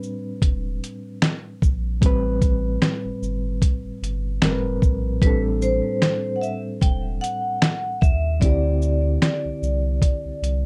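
A nostalgic, hazy lo-fi hip hop excerpt with a lazy swing, built on jazzy, extended chords in a dark production with light reverb. A reedy, clean electric piano with a fast tremolo carries the harmony from the start, alongside a gritty, compressed sampler-style drum kit of thumpy kick, fat snare, hi-hat, shaker and finger snaps that sits up front with a small-room character. A round, deep sine sub bass with a fast attack and sustained, mellow tone joins at 0.4 seconds. At 5.2 seconds a vibraphone played with medium hard mallets enters with a metallic, ringing melody, its slow motor vibrato and analog delay set in a boxy small room. The passage is cut from a longer piece, ending on a suspended chord.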